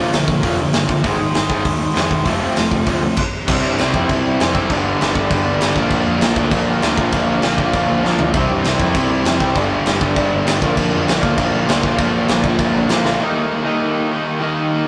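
A straight 4/4 punk rock drive at 198 BPM opens this rowdy, rebellious excerpt, with a raw garage drum kit up front, its punchy kick, medium-tuned snare, hi-hat, crash and toms sounding gritty and saturated in a bright stone room, breaking off in a stop at 3.2 seconds and adding fills around 8.0 seconds and 13.1 seconds. Three picked guitars churn out riffs through chords from Bb and Ab5 to C, G and a closing Eb: a dark, compressed overdriven guitar sounds loudest, while a bright overdriven guitar and a double-tracked, high-gain distorted guitar sit in the background. Beneath them a fuzzy, punchy picked bass rumbles until 13.2 seconds, all captured as a rough rehearsal-room recording with tube saturation and moderate stone-room reverb.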